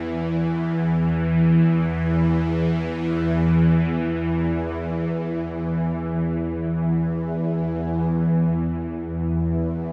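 Ambient and dark, this brief fragment of a longer piece unfolds in free time, its mood ominous and tense throughout. A single bowed-like drone carries everything alone from 0.0 to 9.9 seconds, sitting low between E2 and E3 and placed up front in the mix. Its string-like sawtooth tone is brilliant and slightly detuned, layered in unison with a thread of noise, and it rises on a slow attack before sustaining with vibrato into a long release. The drone's own built-in reverb and a phaser colour its edge, while the whole sits in a huge, wet ambient space with a decay of 8.0 seconds. A change in section arrives at 8.1 seconds, shortly before the fragment breaks off.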